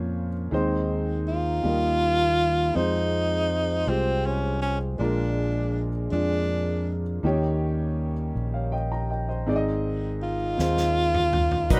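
A woody, intimate upright piano, a round and punchy fingered electric bass and a clear French horn section holding soft background chords open this slow, jubilant gospel passage in Ab major, moving at 54 BPM in 6/8. At 1.3 seconds a present tenor saxophone takes the melody up front with vibrato, carried over a progression that settles from Bb7 through Eb7 to Ab. A natural country drum kit with a punchy kick plays a fill from 10.6 seconds, and a bright, shouting tonewheel organ with slow rotary speaker and light overdrive enters at 11.7 seconds, all in a rough home demo mix with light reverb.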